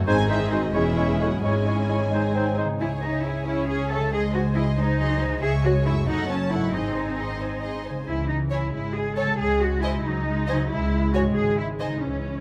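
Up front, a warm-toned cello section carries the bass with even, smooth bowing, anchored by the double basses in this dramatic, restless fast romantic movement in C# minor, set in 6/8 at 91 BPM. A distant violin section sings the melody in the background with lush vibrato, while a second, closer violin section shapes an expressive countermelody with portamento. Violas fill in the accompaniment, and a ringing concert harp supplies arpeggios beneath. For the opening moments, an airy, hollow flute, a soft-attack oboe, a clear clarinet, a roomy bassoon and a very quiet horn section add mellow wind colour, all falling away by about 2.8 s as the strings and harp press on. The harmony swings between C# minor and its G# dominant, with a brief turn to F# minor, and the orchestra sits in a moderate scoring-stage reverb in this cut from a longer piece.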